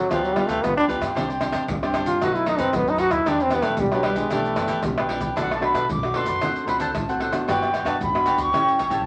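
Nostalgic and yearning, this short cut from a longer samba and choro piece moves in a straight 4/4 and carries the faint crackle of vinyl in a wet club reverb. A brilliant, forceful trombone leads up front in jazz style, its punchy notes scooped and touched with light vibrato, until 4.8 s. Beneath it a crisp, picked cavaquinho and a fingerpicked classical nylon-string guitar fill in the harmony, while a woody, dark pizzicato upright bass sits in the background. Maracas, a tight surdo, pandeiro and tamborim give the percussion a vintage, band-limited colour, and a drum fill leads into the second half. From 5.4 s a distant silver concert flute takes the solo with an airy straight tone and a crisp attack over chords such as Bm7 and Gmaj7.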